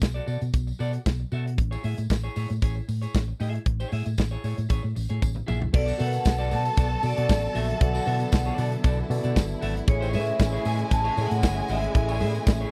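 A round, dark hollow-body electric bass sits up front in this celebratory, danceable disco excerpt, riding a straight 4/4 groove alongside a tight-kicked studio drum kit with a medium-tuned snare, hi-hat, crash and toms. A bright, twangy picked guitar and a jingly tambourine tucked in the background fill out the opening over Bm7 and Amaj7 chords. After a drum fill at 5.2 seconds, the arrangement blooms at 5.7 seconds as a metallic, ringing vibraphone takes the melody with a slow motor vibrato. At the same moment, a lush, expressive violin section adds a second line, a worn, slightly out-of-tune electric piano chimes in with light overdrive, and a smooth string section holds sustained chords in the background. The sound is dry and close, recalling a 1970s studio session, and the passage is cut from a longer piece.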